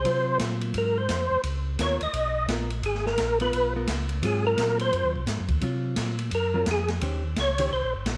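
Bluesy and soulful, this brief soul jazz organ trio passage swings at 172 BPM in 4/4, sitting in Ab mixolydian over Ab13, Db13 and Eb6 chords while a tonewheel organ solo runs throughout. A percussive, round organ voice with third harmonic percussion, chorus vibrato and a slow rotary speaker carries the melody up front, and a mellow, clean organ bass with key click and its own slow rotary speaker holds down the low end. An acoustic drum kit with dark cymbals, a medium-tuned snare and a boomy kick plays hi-hat, ride and snare, a compressed, picked hollow-body electric guitar comps quietly beneath, and moderate echo chamber reverb with small room ambience gives the trio a natural studio feel.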